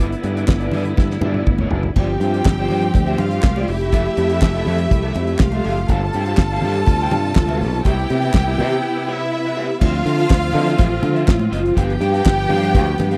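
A dry, close disco groove at 122 BPM opens with a dark, slightly broken-up electric guitar with subtle chorus, clear lush strings holding sustained chords, a growly, up-front fingered bass, a damped 70s drum kit with a fat snare, tight kick, handclaps and a fill from 1.0 to 2.0 seconds, and very quiet, high-tuned congas, before a warm violin section adds a smooth second line at 2.0 seconds over chords moving from Em7 through Fmaj9 and Cmaj7, a break at 8.8 seconds, then Dm9 and G7 in this danceable, driving excerpt cut from a longer piece.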